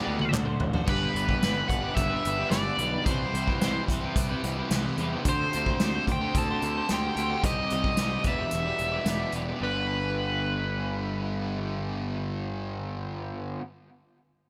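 A straight 4/4 pulse at 110 BPM drives this wistful, upbeat indie rock piece in G major, opening on a drum fill from a roomy acoustic kit with dark cymbals, a punchy kick and bundle sticks under gated reverb, plus a hollow group handclap at 0.3 seconds, while a bright, overdriven lead guitar with digital delay carries the melody over a fuzz guitar riff with distortion, analog chorus and delay, a clean, compressed twelve-string electric riff with subtle chorus, and a warm fuzz-overdriven picked bass, the drums stopping at 9.5 seconds as the chords return to G, all set in a bright 1980s-style digital production with small room ambience.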